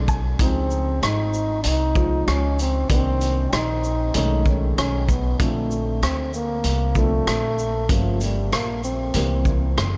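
Soaked in a huge, dreamy reverb, this smoky, cool jazz-hop excerpt at 96 BPM rides a swung 16th-note feel as a dark, slightly detuned upright piano with audible action noise opens with a brief fill, before a mellow, close-miked trombone with light vibrato and analog delay takes the melody from 0.4 seconds over thumpy pizzicato upright bass and a vintage drum kit with a punchy kick, hi-hat, rim click and shaker, moving through chords such as Dbmaj9, B13 and C7.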